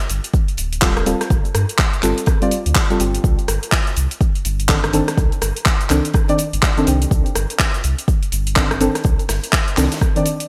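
A layered deep house kit of cabasa, handclaps, hi-hat and rim click with gated reverb opens this moody deep house excerpt in swung 4/4, joined by an overdriven, up-front electronic kick, while a very quiet acoustic studio kit adds faint hi-hat and snare. A full sine-and-triangle sub bass with octave pumps under sidechain, and deep, nasal chord stabs with a filter pluck, chorus and delay move from G9sus4 to Cm69 at 3.2 seconds. Light digital ambience frames a bright 1980s-style production.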